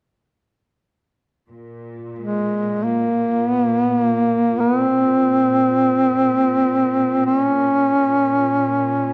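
Solemn and longing, this Caucasian folk lament unfolds in free time in Bb minor, opening with a rich, bowed cello section holding a low drone on Bb2 from 1.5 seconds, lush and distant behind the lead. At 2.2 seconds a mellow duduk enters up front with the melody, its vibrato-laden folk-style line moving between Ab3 and Db4 as a present, solitary voice over the smooth, even strings. Close, detailed microphones capture the pair in a moderate recital hall reverb, and this brief fragment, cut from a longer piece, ends at 9.1 seconds.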